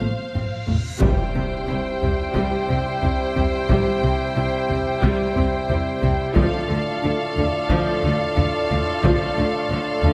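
Heavy-stick taiko drums drive this dramatic, heroic cinematic film cue at 90 BPM, opening with a fill before a huge, dark reverse cymbal and impact sound in the background from 0.6 seconds. At 1.0 seconds bright trombones, mellow woodwinds and a dark solo trumpet playing stabs join the lush bowed strings: vibrato violins carry the melody over a distant second violin line, close violas and cellos sit beneath, and double basses anchor the bass, while French horns hold sustained chords. The harmony moves from F/A to C and then Dm inside a moderate scoring-stage reverb.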